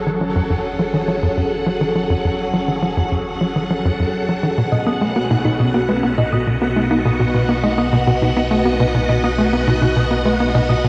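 Hypnotic and expansive, this ambient, sequencer-driven space music moves at 103 BPM in a straight 4/4, cut from a longer piece and shifting from F#madd9 to B at 4.6 seconds. A swirling, vintage string machine holds bright, up-front sustained chords through ensemble chorus and phaser, while a deep, round sub bass fades in beneath a tight, nasal sequencer bass riff that carries lush chorus and delay and a filter sweep across the whole passage. From 4.7 seconds a tine-like, thumb-piano-like synth pluck adds gentle arpeggios in the background, all bathed in a huge reverb and the warbling pitch drift of worn cassette tape.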